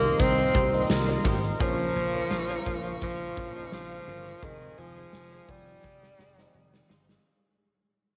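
Lightly swung sixteenths in 4/4 drive this nostalgic yet urgent 1980s-style pop fragment, which fades throughout as a huge, punchy arena drum kit with hi-hat, kick, snare and tambourine pumps up front and breaks into a fill from 5.8 seconds. A clear, vibrato-laden tenor saxophone carries the melody up front with scooped notes, over a growly amped slap bass, a glassy, bell-like FM electric piano with chorus and phaser, and a shimmering pulse-width pad holding chords in the background. A very quiet, compressed clean guitar picks a riff recorded direct, and the whole home cassette recording sits in light, small-room reverb, with tape colouring the saxophone, electric piano, pad and drums.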